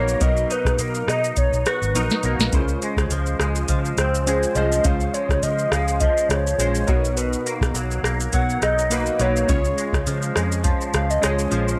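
A light reverb lends this short clip of dreamy, nostalgic bedroom pop a gentle sense of space, with a lightly swung feel in 4/4. A mellow, warbling synth lead carries the melody throughout. Its soft attack, detuned square and sawtooth tones, vibrato and lush chorus are set off by a slapback echo. Beneath it, a bright, twangy clean electric guitar recorded direct adds picked, compressed accompaniment with an ensemble chorus and a warbly pitch drift. Full-bodied analog keys with a detuned sawtooth tone, filter sweep and cassette-tape colour fill out the harmony, while a dark, round, foam-muted fingered bass anchors the low end. An up-front vintage rhythm box with a deep kick, tonal snare, metallic hats, rim click and shaker keeps time, dropping a brief fill between 1.9 and 2.5 seconds as the chords move from Cbmaj7 to Dbmaj7, back to Cbmaj7 and on to Db.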